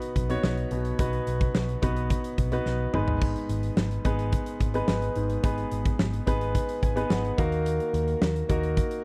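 A straight 4/4 pulse at 108 BPM drives this romantic, uplifting 1980s-style pop fragment, cut from a longer piece, with a big rock drum kit sounding dark and fat-snared, its punchy kick up front, and a drum fill at 2.7 seconds. A picked electric bass enters at 0.2 seconds with a round, amped tone beneath an intimate concert grand piano whose audible action noise and long sustain carry chords moving from B to G#m to D#m, capped by a piano fill at 6.5 seconds. The dry, close 1970s-style studio sound frames the piano as present and polished.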